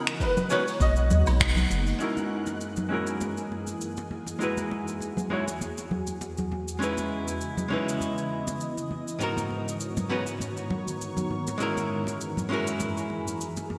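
A dark, clean archtop guitar sits up front through this smooth, sunny sunset chillout excerpt, its picked hollow-body chords running through digital delay, with a filter sweep during the opening 2.0 seconds. A shimmering, ethereal pad holds detuned chords throughout, while a clear but boxy grand piano phrase, a twinkling granular texture in the background, a deep electronic kick and a round, mellow sub bass appear only briefly near the start, with a band accent at 1.4 seconds. Natural brushed drums with cabasa, finger snaps, hi-hat and woodblock ride under gated reverb beside ringing, high-tuned congas played with hard hands, all set in a lush hall and a bright 1980s-style digital production with a gentle swing.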